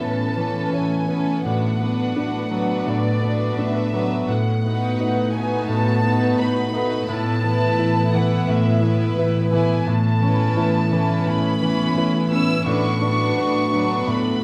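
In a rubato 4/4 that breathes freely, this cinematic, emotional film score for orchestra feels moving and hopeful, a short excerpt lifted from a longer piece. A dark symphonic violin section carries the melody high above, its sul tasto bowing pure and floating. Beneath it, a second violin section adds an intimate line with vibrato, while a rich viola section fills in the accompaniment and a background cello section, dark with light vibrato, holds the low ground on a single A. A clear concert grand piano with deep bass sits in the background as accompaniment, and a ringing, fingerpicked concert harp spins arpeggios alongside it. Chords such as Aadd9, Bm/A and Esus4/A shift over that steady A in the bass, all bathed in the wet reverb of a scoring stage.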